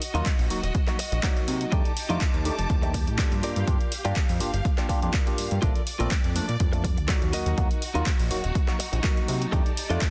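This sunny, funky filtered disco house excerpt at 123 BPM with a light 16th-note swing opens with a fat, detuned sawtooth bass, a punchy analog drum machine of handclaps and hi-hats re-recorded in a large room, a barky tine electric piano with phaser and 12-bit sampler grit, a bright, scooped clean guitar riff, and clear bowed strings holding sustained chords over an Ebm, F13, Gm7, Bbmaj7 progression. An overdriven, up-front electronic kick joins moments later, with sidechain pumping on the strings, electric piano, guitar, bass and hats beneath a dense, heavily limited modern master.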